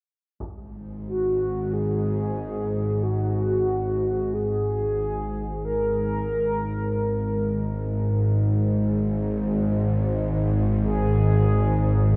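Dark ambient drone excerpt, vast and ominous, where a brief, muffled taiko ensemble struck with hard sticks sits in the background at 0.4 seconds before a tense, detuned, string-like sawtooth drone with vibrato and a noise layer swells up front from 0.7 seconds, joined at 1.1 seconds by a round, warbling, horn-like synth lead with chorus and tape echo, all bathed in a wet cathedral reverb.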